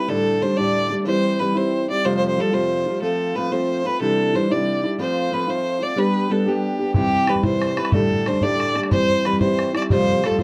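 A lively, rollicking Celtic jig in 6/8 at 122 BPM, this fragment of a longer piece sets a clear, focused fiddle melody with light vibrato and a smooth top against a dark, woody fingerpicked steel-string acoustic guitar with old strings, both up front in a small, reverberant room, while an open, boomy bodhran joins at 6.9 seconds as the chords move through Gsus2/D, C/E and Fadd9.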